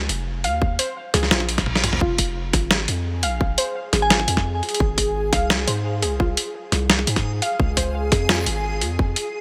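A light reverb gives this short excerpt of half-time drum and bass a dark, spacious air, moving at 172 BPM in F minor over a Bbmadd9, Fm, Ab and Db progression. A deep, sine-toned 808-style bass sustains long from the start, sitting up front beside a gritty, pitched-down, sampler-style boom bap kit of hi-hat, medium-tuned snare and toms, joined at 0.6 seconds by a hard-clipped electronic kick. A warbling, detuned, lo-fi pluck spins arpeggios through chorus and digital delay, its filter sweep and sub octave adding vintage dusk to the upper register. A reverse cymbal in the background rises from 1.5 seconds as a brief drum fill plays from 1.7 to 2.0 seconds, and from 2.9 seconds a bright, reversed, granular texture swells dreamily on a sustained Ab with its own built-in reverb. Midway, a single crystalline FM bell note rings out at 4.0 seconds, roughened by 12-bit sampler grit and trailed by delay.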